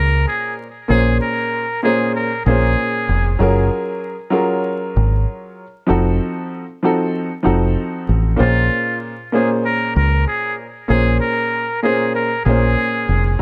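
Boom-bap hip-hop with a tough, moody cast, swung on the sixteenths and cut from a longer piece, set in light reverb with a layer of vinyl crackle. A dark grand piano with audible action noise and short sustain carries the chords throughout over a round, foam-muted fingered electric bass sitting up front, moving from Bbm9 through Gbmaj7 and F7b9 back to Bbm9. A muted trumpet with a buzzy, breathy tone, light vibrato and scooped notes plays a whispered jazz-style melody from 0.0 to 3.4 seconds and returns at 8.4 seconds, colored by plate reverb and delay.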